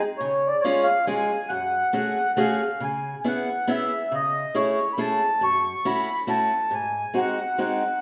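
A mellow accordion opens this nostalgic, bittersweet musette excerpt in C# minor, carrying the melody at 138 BPM in a lightly swung 3/4 with a reedy, slow-beating, vintage tone. A fingerpicked steel-string parlour guitar joins at 0.2 s with dark, boxy accompaniment and an audible finger squeak, both instruments up front in a wet recital-hall reverb. The harmony moves from C# through F#madd9, C#m7, Amaj7/C# and F#m7 to G#7, and the cut from a longer piece stops at 8.0 s.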